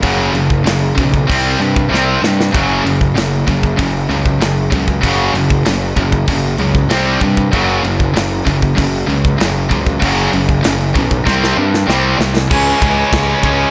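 Captured in a small room ambience, this dark, heavy metal excerpt puts a polished, airy studio drum kit up front, with bright cymbals, a punchy kick and a medium-tuned snare, next to a growly, fuzz-laden picked electric bass. Two high-gain distorted electric guitars sit in the background playing riffs over power chords, with drum fills at 1.9 and 11.3 seconds. At 12.5 seconds one of the heavy guitars drops out as a tight, double-tracked distorted guitar enters with a brief new riff over a C# minor chord.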